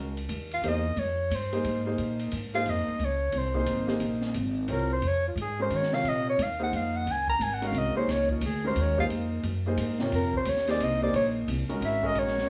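Light reverb and a small-room ambience give this searching, intense modal jazz excerpt an intimate, close-up sound, cut from a longer piece in Bb minor and moving at 177 BPM in a swung 3/4. A breathy soprano saxophone carries the melody as a solo from 0.5 seconds, its dark, whispered subtone, light vibrato and soft attack sitting up front with a smooth top. A clear concert grand piano supplies accompaniment from the start, natural in tone with deep bass and long sustain, over a Bbm11 harmony. The upright bass plays pizzicato on gut strings, woody and thumpy, also up front. An acoustic jazz kit enters at 0.2 seconds with hi-hat, ride, snare and kick, its dark cymbals, high-tuned snare and punchy kick sitting further back in the balance.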